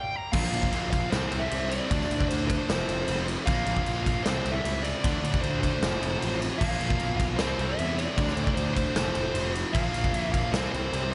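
A punchy, up-front acoustic rock drum kit of kick, snare, ride and crash drives this heavy hard rock excerpt at 153 BPM in 4/4, where a dark high-gain lead guitar sounds alone before a fuzzy overdriven bass, a bright double-tracked high-gain rhythm guitar in the background, and two very quiet riffing guitars, one overdriven and one sludgy, join at 0.3 seconds over a repeating Bb5, C5, D5, F5 progression, all in a big arena sound with lush hall reverb.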